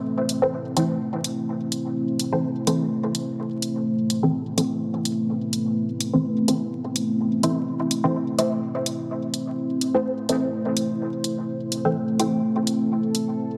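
A deep, warbling sawtooth pad with chorus opens this cavernous, meditative dub techno fragment, soon joined by a dry, overdriven electronic hi-hat and a muted, detuned chord stab drenched in phaser and dub echo, while filter sweeps move through both pad and stab over vinyl crackle inside a wet echo-chamber reverb.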